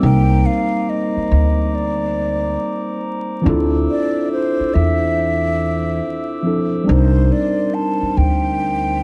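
Lo-fi hip hop at 70 BPM in 4/4, this melancholic, reflective fragment from a longer piece moves with a 65% swing on the sixteenths and is tuned slightly low, to A4 = 439 Hz. Across its 9 seconds the harmony drifts from Cm9 to Dm9 at 3.5 seconds and back to Cm9 at 6.9 seconds. A breathy, hollow concert flute carries the melody up front, close-miked with a straight tone and soft attack. A worn tine electric piano, slightly out of tune and heard through its built-in speakers with a cassette-tape character, plays accompaniment, while a woody pizzicato upright bass on steel strings sits prominently beneath. Behind them, a glassy, ethereal glass harmonica holds pure, slow-attack chords in a high register. The dark production carries light reverb and a bed of vinyl crackle.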